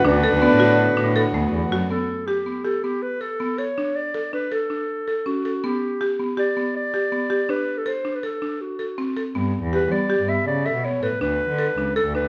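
Urgent and restless, this fragment of contemporary chamber music in 5/4 sets a warm, classical-style clarinet melody over dry, woody marimba arpeggios that buzz under medium hard mallets, while a soft-attacked French horn line, breathing harmonium chords and a dark, gut-string cello bass drop out within the first 1.9 seconds, with the cello returning at 9.3 seconds, all in a moderate recital-hall reverb.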